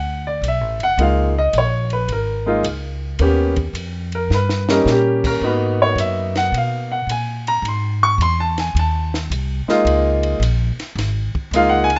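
Swinging and moody, this short jazz piano trio excerpt at 108 BPM features a deep-voiced concert grand playing the melody solo through plate reverb, with a woody pizzicato upright bass sitting close alongside it and a dry cocktail drum kit entering at 0.4 seconds with dark cymbals, a high-tuned snare and a punchy kick, adding a brief fill at 4.3 seconds, all in a rough, dull-topped home demo mix with a moderate studio room.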